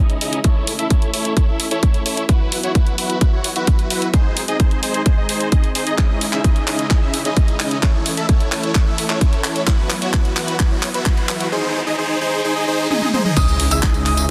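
Euphoric and emotional, this festival progressive house build-up moves at 130 BPM in C# minor, a fragment cut from a longer piece. A huge, thick supersaw riff sits up front with sidechain pumping, a low-pass filter and dub echo, while a lush, detuned unison pad holds sustained chords in the background with chorus and the same pumping. Beneath them a menacing, saturated saw bass beats darkly at a very quiet level, and a punchy layered kick drives the groove alongside a house kit of handclaps, hi-hat, tambourine, toms and crash, its snare softly clipped. The chords cycle through A, Bsus4, G# and C#madd9, drum fills arrive from 6.0 seconds, and a riser climbs in the background from 8.4 seconds toward a sub drop impact at 13.4 seconds. At that moment a warm concert grand piano enters with high arpeggios, pumping and echoing, all set in light digital ambience within a dense, heavily limited modern master.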